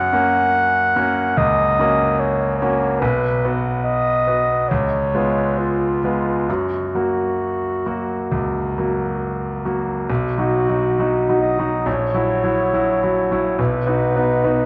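Rubato at 68 BPM in 4/4 shapes this lyrical romantic classical excerpt, where a mellow, smooth-topped clarinet sings the melody over a bright, polished concert grand piano accompaniment with deep bass, moving from F# major into B major at 10.1 s, with the pair set in a dark production and moderate concert hall reverb.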